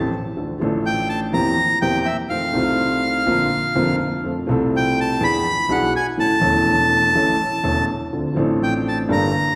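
Tango in a sultry, melancholic mood, this short passage, cut from a longer piece, moves with a loose, rubato feel in 4/4. A dark grand piano opens at 0.0 seconds as the accompaniment, sounding mellow and intimate, with a long sustain, a slightly boxy body and audible action noise. The bandoneon enters at 0.9 seconds with the melody, high in its range, its reedy, full tone close-miked and placed up front alongside the piano. The harmony travels from Dm through C7/E, F7, Bbadd9, F and E7 to A, then settles on Dm7 at 8.1 seconds, near the close. A wet concert hall reverb surrounds the duo, giving the intimate playing a spacious, church-like resonance.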